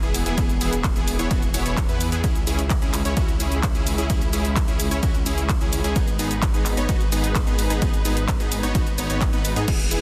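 Festival progressive house at 129 BPM, this anthemic, euphoric drop moves from E to C#m and on to G#m, with a punchy, overdriven kick up front from 0.4 seconds, driving a layered big-room kit of handclaps, hi-hat, ride, crash and cabasa. A thick, chorused detuned saw bass and an airy supersaw stab riff with digital delay both pump against the kick, while a rich symphonic string section holds sustained, vibrato-laden chords in the background. The dense, heavily limited master sits in digital ambience, and the clip is cut from a longer piece.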